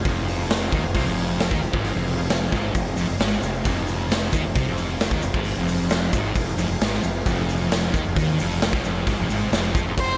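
A lightly reverberant, brooding and swaggering classic rock excerpt, driven by a sludgy, double-tracked overdriven guitar riff and a round, fuzzed fingered bass, with a saturated, up-front garage drum kit pumping in a stone room with a punchy kick, a very quiet shouting tonewheel organ holding sustained chords through slow rotary chorus vibrato, a grainy egg shaker in the background from 2.7 s, and a dark, up-front octave-fuzz lead guitar breaking in at 10.0 s.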